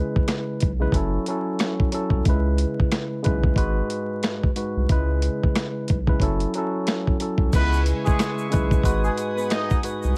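Boom-bap hip-hop with a moody, dark cast, this short passage cut from a longer piece rides a swung groove under a steady layer of vinyl crackle and light reverb. A bright, clean tine electric piano sits up front from the opening, its accompaniment filtered and given plate reverb, with a dusty sampler-style drum kit arriving at 0.2 seconds: a thumpy kick, medium-tuned snare, rim click, hi-hat and crash, all compressed and gritty. A deep, thick sub bass enters at 0.6 seconds with a saturated, fast-attack tone that holds its notes. At 7.5 seconds the arrangement fills out as a tight horn section adds vibrato-tinged, pop-style stabs through filtering, delay and plate reverb, while a soft-attack studio string ensemble floats pure, bowed sul tasto chords high above. A grainy egg shaker joins at the same moment, sitting in the background beneath the rest of the mix.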